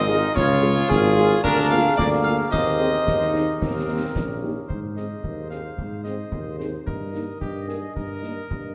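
Festive and spirited, this short fragment of a military-style wind band march in 2/4 sets a mellow solo cornet melody over a roomy, distant tuba bass, with sparkling brass-mallet glockenspiel and an airy, hollow flute ensemble adding second lines until 4.1 seconds, a soft-attack woodwind section with vibrato supporting in the background throughout, bright trombone chords sustaining until 4.7 seconds, a dark, very quiet French horn section accompanying, and close, dry snare drum, clash cymbals and bass drum driving the march, inside a wet scoring-stage reverb.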